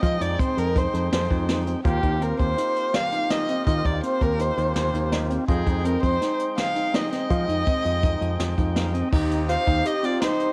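A brisk 5/4 pulse at 165 BPM drives this short, bright and intricate progressive instrumental, with a brushed jazz kit up front in a small room, its high-tuned snare, boomy kick and dark cymbals sounding natural and close. A picked electric bass, direct and up front, anchors the low end until 9.8 seconds, moving over Fm7, Eb6 and back to Fm7 before the harmony shifts to Cm/Eb at 9.1 seconds. A dark, nasal violin carries the melody with vibrato, portamento and an expressive, boxy bowed tone, while a thick, gritty tonewheel organ with key click and percussion fills in behind and slips in a short fill just before the change. A barky overdriven tine electric piano, coloured by lush chorus, spins arpeggios through a combo amp. In the final second a mellow alto saxophone enters with a smooth subtone second line, and the cassette tape grain and light reverb give the ensemble a homespun feel.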